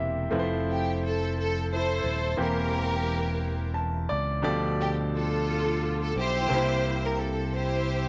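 Set in 6/8 with a straight feel, this slow gospel passage, cut from a longer piece, carries an uplifting, hopeful mood. A natural, up-front grand piano provides the accompaniment throughout, opening with a brief fill before the main section begins at 0.3 seconds and adding another fill around 3.4 seconds. Beneath it, a fingered electric bass sits low with a direct, amped tone. From 0.7 seconds a lush studio string section takes the melody, bowed with vibrato and close, focused presence, its ensemble sound given a touch of slapback echo. The harmony moves through Fmaj7, C7/E, G7/D and C7, all set in a light studio reverb that keeps the sound clear and intimate.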